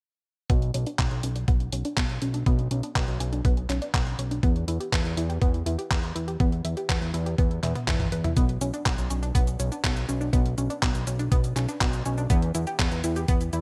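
Nostalgic and melodramatic, this excerpt from a longer italo disco piece moves in a straight 4/4 pulse, cycling between B minor add nine and E minor chords. An analog pluck spins arpeggios throughout, its round, nasal sawtooth tone carrying a noise layer and a bright, decaying filter snap, colored by chorus, phaser, tape echo and a cassette-tape haze, while a filter sweep moves across it over the first 8.4 seconds. Beneath it, a fat analog bass sits up front, thick, detuned and saturated, with a sustained, evolving buzz. A detuned 8-bit digital drum machine supplies cabasa, handclaps, hi-hat and toms treated with gated reverb, and an electronic kick drum adds a thumpy, tape-warm weight, stopping at 13.4 seconds. A drum fill at 7.6 seconds leads into the second section, all set in a digital ambience.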